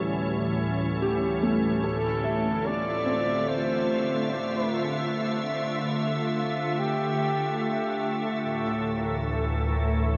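A soft, organ-like pad and a felt-muted upright piano open this reflective, serene ambient excerpt together, the pad holding sustained chords with a pure, warbling, detuned character while the piano plays intimate, muffled arpeggios through analog chorus and diffuse delay. At 1.8 seconds a mellow flugelhorn enters with a distant, roomy solo melody in a classical style, trailed by its own hazy delay. The piece moves at 73 BPM in 4/4 in D minor, drifting from A7/D to Dm11. At 8.4 seconds the piano stops and the harmony shifts to A7(no3)/D, as a round sine sub bass settles on D2 alongside a barely audible, evolving analog drone. The whole mix is soaked in a huge, dreamy reverb with a cassette-tape softness, the up-front pad sitting bright above the deep bass.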